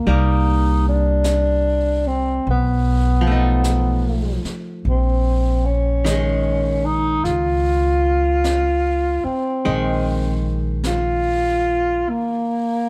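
A slow 50 BPM jazz ballad in Bb minor swings its eighth notes lazily in 4/4, carrying a wistful, smoky mood through this short excerpt that moves from C5 through B7#11 to Bbm11. A breathy, subtoned tenor saxophone sings the melody up front with light vibrato, scooped notes and a whispered, intimate tone bathed in plate reverb, while a hollow-body archtop guitar adds dark, clean, picked and compressed accompaniment. Brushes on a high-tuned snare and hi-hat sit softly beneath, and a woody pizzicato upright bass on steel strings holds the low end until 12.0 seconds, just before a brief break at 12.1 seconds, all within a dark, warm production touched with light reverb.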